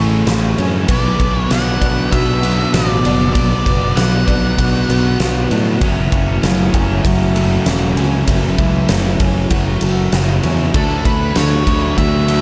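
A straight 4/4 pulse at 97 BPM drives this hazy, blissful shoegaze and dream pop rock excerpt, where a huge arena drum kit with a punchy kick, fat snare and bright ride enters up front at 0.3 seconds over a growling overdriven bass, a thick dark fuzz guitar riff with lush chorus, a biting overdriven guitar riff with reverse reverb and shimmering fingerpicked twelve-string acoustic arpeggios with tape echo, while an octave-fuzz lead guitar melody drifts in at 0.9 seconds and returns at 10.8 seconds, all soaked in a huge ambient reverb across chords moving from Amaj7 through Bm and F#m7 to Dmaj7.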